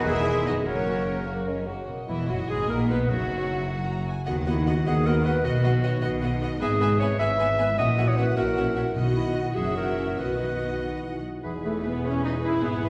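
A cheerful, lively fragment of a dramatic romantic orchestral movement in 6/8 with rubato opens on a full tutti, as a dark violin section in the background sings the melody with expressive vibrato and portamento, a second violin section with a rich tone weaves its own line, and a clear solo clarinet sits prominently alongside them. Smooth violas, lush cellos and a focused, close double bass section carry the accompaniment and bass, while a mellow French horn section holds sustained chords, a very quiet thumb-plucked concert harp rings out arpeggios, and an airy flute group, a distant oboe and a dark bassoon color only the opening moments and the final stretch from 11.4 seconds. A single round timpani stroke on soft mallets sounds at 9.0 seconds, and the whole is heard from further back in a reverberant scoring stage.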